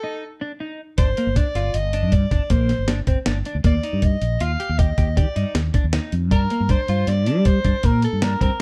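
A dark production with light reverb frames this brief, intricate and bright progressive instrumental in 7/4, where a clear, punchy soprano saxophone with light vibrato plays a distant, roomy jazz-style solo over a clean electric guitar's chorused arpeggios, joined at 1.0 s by a round, up-front fretless bass and a gritty, compressed, sampler-style soul drum kit with a thumpy kick and fat snare as the harmony moves from Gm to Ebmaj7 and back.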